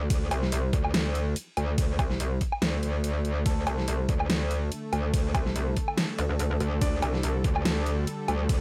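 A half-time 4/4 groove at 143 BPM, with a 55% swing on the sixteenths, drives this short cut from a heavy wobble dubstep track in a heavy, aggressive mood. Two metallic wobble basses sit up front around D2: one distorted and overdriven, the other saturated and moving between C2 and D2, both with a fast attack, tight compression and chorus. Alongside them, an overdriven electronic kick knocks hard, while a layered dubstep kit adds a huge snare, bright hi-hats, ride cymbal and woodblock, all re-recorded in a small room and pushed forward. A dark, mellow grand piano drifts in the background in brief phrases from 3.5 seconds, trailed by tape echo. At 4.5 seconds a lush, thick unison pad of detuned sawtooth voices fades in slowly behind everything, pumping against the sidechain and holding sustained chords under a digital ambience.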